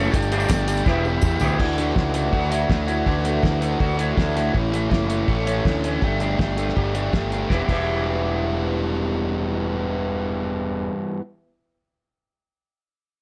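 A buzzy combo organ with heavy vibrato holds chords over a jingly tambourine for the first 1.6 seconds of this restless, cool indie rock excerpt at 162 BPM in E dorian. Underneath, a biting overdriven guitar and a dark, lo-fi second guitar with lush chorus play riffs over an up-front, fuzzy picked bass. A cloth-damped, thuddy drum kit with a fat snare and dark cymbals plays a fill before the chords move through Dadd9 and A, then stops at 7.8 seconds, leaving the guitars and bass to carry the closing Em passage under light reverb.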